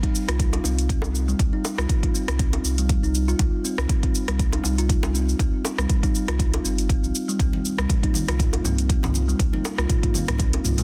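A swung 16th-note groove at 120 BPM in 4/4 drives this driving, spiritual afro house excerpt in C minor pentatonic. A deep, up-front electronic kick sits under an afro-pop drum kit of metallic hi-hats, rim clicks, shaker, toms and a softly clipped snare, with tight, high-tuned bongos played with soft hands, while a woody, ringing kalimba plays arpeggios through digital delay and sidechain pumping beside a round sine sub bass in a dense, heavily limited, dry mix. At 7.4 seconds a moody, detuned sawtooth pad with chorus enters in the background, joined at 7.5 seconds by saturated congas.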